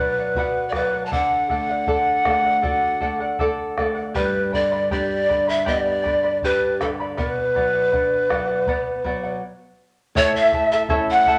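Wet studio reverb surrounds this melancholic yet festive Andean folk fragment, cut from a longer piece and set in B minor at a straight 80 BPM in 4/4. Up front, a breathy, mellow wooden pan flute carries the melody with a polished, tongued straight tone, its chiff and unsteadiness clearly audible. Beneath it, a shimmering, double-strung charango and a small, boxy nylon-string guitar are both fingerpicked, with the guitar's finger squeaks coming through. A round bombo, heard in a live room, enters at 0.3 seconds. The chords move from B minor through D and G and back to B minor, then a stop at 9.4 seconds gives way to A as an end-blown cane quena, warm and soft in attack with vibrato, joins on a second line at 10.2 seconds.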